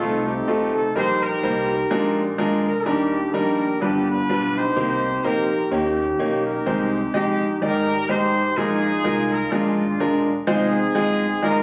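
Swung eighth notes drive this uptempo gospel cut at 126 BPM in 4/4, a soulful, uplifting passage in E-flat major lifted from a longer piece, moving through chords like Ebmaj7, Abmaj7 and Bb7sus4 before turning to Fm7 at 10.5 seconds. A tight, clear horn section with a smooth top carries the pop-style melody up front alongside a brilliant grand piano accompaniment, while a deep, full sub bass doubled at the octave sits sustained in the background. The sound is phone-captured in the room, bathed in a moderate echo-chamber and club reverb.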